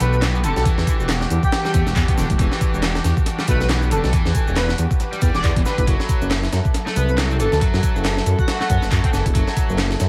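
Funky and energetic, this swung breakbeat excerpt at 138 BPM in E minor rides a gritty, pitched-up sampler drum kit with a thumpy kick and high-tuned snare up front, backed by a deep, rumbling detuned saw bass, while electronic shakers and handclaps sit in a small room in the background. A double-tracked, overdriven guitar riff with tape echo and gut-string chamber strings with light vibrato and sampler grit pump beneath an airy, dreamy lead melody that carries chorus and an AM radio tone until 8.8 seconds. The Em9 harmony shifts to F#m7b5 at 5.9 seconds, all wrapped in an echo-heavy mix with light digital ambience and vinyl crackle.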